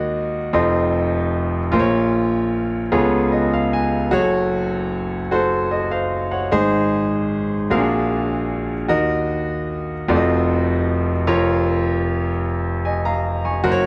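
Jubilant and hopeful, this short gospel passage moves in 6/8 with a straight feel. A solo grand piano carries the whole 13.9 seconds, its tone clear and natural and placed up front, spanning from F1 up to Db6. A slapback echo trails the piano, and a light reverb adds a touch of space around it. The harmony moves through rich minor and dominant colours, including Ebm, F7, Bbm, Db7b13, Gbm, Bb7b13 and F7b9, before settling on Bbm/F. A brief piano fill stands out between 2.9 and 4.1 seconds, and the instrument is tuned to A4 = 436 Hz.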